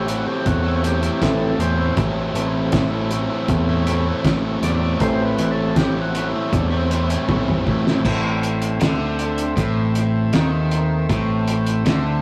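A rough rehearsal-room sound with warm saturation frames this dark, hypnotic psychedelic rock excerpt in A minor at 79 BPM, where a thick, key-clicking tonewheel organ solos through a slow rotary speaker and light overdrive until 8.0 seconds, over a crunchy double-tracked guitar riff, round, punchy picked bass, a reedy harmonium drone in the background that stops at 8.1 seconds, and a muffled, gritty, thuddy cloth-damped drum kit with a fat snare and dark cymbals that plays a fill from 7.3 seconds.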